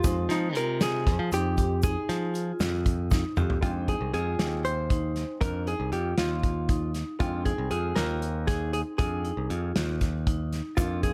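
Tense and brooding, this progressive instrumental band excerpt moves in a straight 7/8 at 235 BPM (eighths) in F dorian, opening on Ab/F and shifting to Fm7 at 3.6 seconds after a drum fill from 3.1 to 3.6 seconds. A dark, clean, compressed hollow-body jazz guitar carries the melody up front with plate reverb, while a growly, punchy picked electric bass and a loose acoustic drum kit with a tight kick and rolled-off top also sit up front. Soft-mallet vibraphone arpeggios ring mellow through plate reverb and delay, a boxy, very quiet grand piano adds deep accompaniment, and a grainy egg shaker sits in the background until 3.5 seconds before returning at 10.8 seconds.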